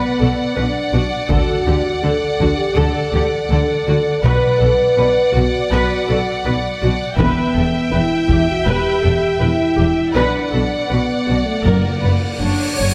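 Cinematic, epic orchestral film score in B minor at 81 BPM, heroic and dark, where lush, distant violins carry a vibrato melody over a second violin line and intense violas, dark French horns hold sustained chords, rich cellos and double basses anchor the bass, taiko hit with hard sticks at 1.3 and 7.2 seconds, timpani with calf heads sit in the background, and a huge, bright cymbal swell arrives at 11.8 seconds over the closing F# chord, all bathed in a wet concert hall reverb.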